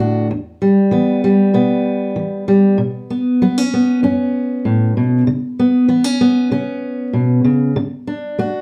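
Melancholic and intimate, this short folk passage, cut from a longer piece, moves at 97 BPM in a straight 4/4 in E dorian. A lone fingerpicked steel-string acoustic guitar with a dark, auditorium-sized tone sits up front across its span from E2 to F#4, moving through Em, Bsus2, Bsus24 and D. A wet studio reverb lends the guitar a short tail.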